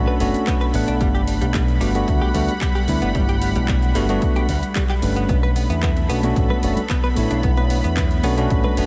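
Lightly reverberant and polished, this cosmic, sleek nu-disco cut moves at 112 BPM in B minor, with a bell-like tine electric piano through analog delay and a lush, detuned unison pad with chorus and sidechain pumping holding Bm7 and Gmaj7 chords, while a round, envelope-filtered picked bass, a clean, compressed direct guitar riff with analog chorus and delay, a layered electronic kick, and a house kit of handclaps, hi-hat and shaker in small room ambience drive the groove, before very quiet, dry congas and cabasa join at 5.3 s as the harmony returns to Bm7.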